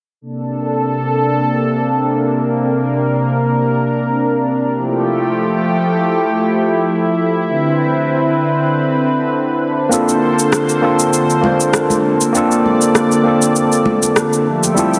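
A lush, detuned unison pad with a slow attack and chorus opens this blissful sunset chillout excerpt at 99 BPM in Bb lydian, holding thick sustained chords from Bbmaj9 through Fmaj9 and Cmaj9 before returning home. At 9.9 seconds a barky, gritty tine electric piano through a combo amp arrives with delay, joined by an up-front overdriven electronic shaker and rim click in a lightly swung 4/4. Ringing, high-tuned congas sit in the background from 11.4 seconds, all bathed in a lush hall reverb and a heavily compressed, radio-like sheen.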